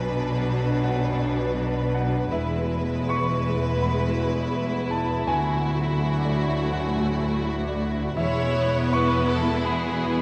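Heard from the first moment of this brief cinematic passage, cut from a longer piece, a full orchestral ensemble plays together in a hopeful, moving mood, with a flexible rubato pulse in 4/4. Bowed violins carry a smooth, vibrato-laden melody up close, while a second violin line sits more distant and focused beneath it. Violas add lush accompaniment in the background, a dark French horn section holds sustained chords, and a concert grand piano supplies warm accompaniment with deep bass. Cellos shape an expressive bass line marked by portamento, paired with a bowed double bass section that anchors the low end, while a very quiet harp rings out fingerpicked arpeggios. The harmony moves from Bm to E, then to Dadd9 and back to E, with the ensemble set in a wet recital hall reverb.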